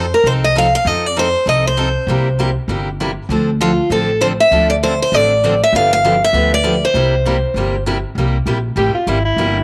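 A bright, up-front picked steel-string guitar carries the melody of this playful, lively acoustic string swing excerpt, finger squeak audible on its fresh strings, with a full-bodied dreadnought guitar picking out chords and a woody, thumpy pizzicato upright bass on gut strings underneath. The lead guitar drops out at 7.8 seconds, and a smooth soprano saxophone with light vibrato steps forward for a short jazz solo from 8.8 seconds. A moderate spring reverb gives the small group a lively, roomy sheen.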